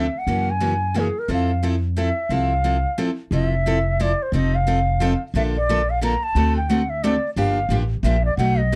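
A swung triple-metre lilt drives this lively, playful snippet of acoustic string swing in the gypsy-jazz manner, cut from a longer piece. Up front, a bamboo bansuri carries the melody with a pure, warm tone, tongued notes and vibrato, while a picked steel-string acoustic guitar, bright with fresh strings, supplies the accompaniment. A pizzicato upright bass sits slightly louder beneath them, woody and dark, anchoring the low end. All three parts play together throughout, with a brief break at 3.0 seconds before the second section begins at 3.3 seconds and moves through a dominant-flavoured progression toward a minor seventh chord. Light reverb and a warm, dark production round out the trio's sound.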